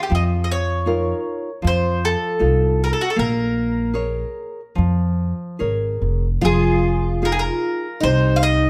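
Mournful and longing, this short excerpt from a fado-style ballad in Bb minor moves at a rubato 72-79 BPM in 4/4. A picked mandolin carries the melody from the start, its double strings giving a round, up-front voice. Beneath it, a fingerpicked nylon-string guitar supplies a bright, full-bodied accompaniment with audible finger squeak, while a pizzicato upright bass on gut strings adds a woody, dark, thumpy low end. The harmony drifts from F7sus4 through F7 to Bbm7, then settles on Fm7 as a picked twelve-string acoustic guitar enters at 6.4 seconds with a shimmering, octave-doubled second line. Close, detailed microphones and light reverb keep the playing intimate.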